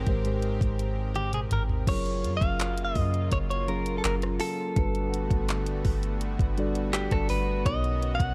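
A clean, compressed electric guitar, picked and recorded direct, carries the melody up front from 1.2 s in this romantic, dreamy stretch of contemporary R&B, just as a drum fill runs from 1.1 to 1.9 s. Beneath it, a mellow tine electric piano plays accompaniment while a lush, thick sawtooth pad with detuned unison, ring modulation and chorus sustains major-ninth chords, and a deep, round 808-style bass decays beneath a soft electronic kit of gentle kick, hi-hat, handclaps, rim click, toms and crash. The production is dark and warm, with little reverb.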